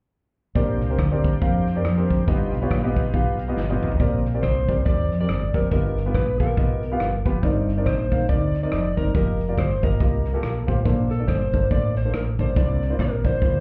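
A dark, slightly broken-up electric slide guitar played with fingerpicks carries the melody from 4.4 s, bathed in plate reverb, over an uplifting, soulful uptempo gospel groove at 140 BPM in Bb major with a swung feel. A warm grand piano accompanies, a round, punchy fingered electric bass sits up front, and a natural country drum kit with a punchy kick and medium-tuned snare adds a fill leading into 4.0 s. A gritty, shouting tonewheel organ with slow rotary speaker and chorus vibrato holds sustained chords in the background until 4.2 s. The whole mix sounds muffled, as if heard through a wall, with a club reverb.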